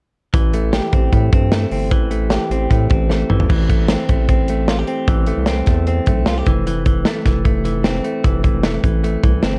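Restless and bittersweet, this short cut from a longer jangly indie pop track moves at a brisk, straight 4/4 pulse. A bright, twangy clean electric guitar, recorded direct and compressed, sits up front with picked arpeggios over Am7 and Fmaj7 chords. Beneath it, a round analog synth bass blends square and sine tones with a wave-folded edge, its fast attack giving way to deep, mellow sustained notes that shift in character as they ring. The acoustic drum kit, punchy in the kick with a medium-tuned snare and glittering cymbals, drives the groove and rolls through a fill from 3.1 to 3.5 seconds that carries the music into its second section. Light reverb and a cassette-tape sheen lend the whole a faintly worn, nostalgic colour.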